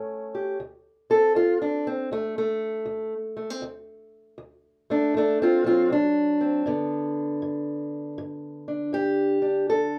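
A fingerpicked steel-string acoustic guitar opens on an A7 and carries this rollicking yet laid-back acoustic country blues alone, moving to D7 at 0.6 seconds and G at 6.7 seconds in D mixolydian. The tempo sits at 79 BPM in 4/4 with a lazy swing on the eighth notes, and the guitar ranges from a low D2 up to A4. Its dark, boxy parlour tone sits up front in a rough home-demo mix, wrapped in a wet small-room reverb, on a short cut from a longer piece.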